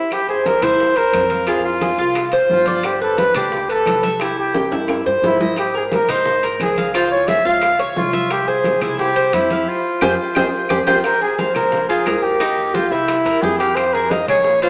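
Heard from further back in the room through a small speaker and bathed in a wet plate reverb, this sultry Cuban son and guajira excerpt sets an up-front flugelhorn melody with scooped notes and slapback echo over picked, metallic arpeggios from a double-strung tres, backed by damped, low-tuned congas, ringing metal-shell timbales, tight high-tuned bongos, very quiet woody claves and a dark, growly pizzicato upright bass, with drum fills at 4.5 and 10.2 seconds leading into a new section at 11.0 seconds.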